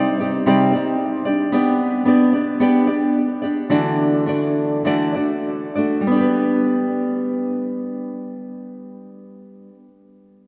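A solo nylon-string guitar opens this short fragment of a heartfelt, carefree pop piece in G major, its fingerpicked classical tone full-bodied and placed up front. It moves in 4/4 at roughly 96 to 113 BPM with a gentle swing on the sixteenths, and the tempo slows down from about 1.5 seconds to 6.1 seconds. The harmony passes from Cmadd9 to G/B and then Dadd9 before settling on G as a new section begins at 6.1 seconds. The guitar spans from C3 up to D5 and plays until 9.9 seconds. A drenched cathedral reverb with a long tail wraps the instrument in a vast, echoing space, lending the warm acoustic playing a spacious glow.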